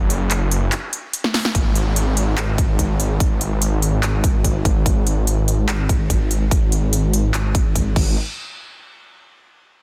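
A thick, detuned sawtooth bass with chorus and sidechain pumping opens this emotional, dreamy future bass excerpt at 145 BPM in a half-time feel, joined at 0.1 seconds by a big-room dance kit of punchy snare, crisp hi-hats, handclaps and crash cymbal, before a tape-warm electronic kick lands at 1.5 seconds as a filter sweep begins on the up-front bass, all inside a dry, dense and heavily limited modern master.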